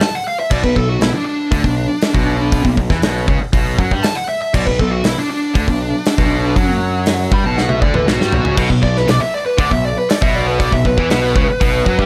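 Set in a small room ambience, this menacing, aggressive hard rock excerpt in B minor at 119 BPM opens with a dark, distorted bluesy lead guitar soloing up front over a punchy acoustic drum kit with bright cymbals, joined at 0.5 seconds by a bright overdriven riff guitar and a round, fuzzy picked bass, with a drum fill at 7.6 seconds leading to a tight distorted second guitar entering in the background at 8.6 seconds.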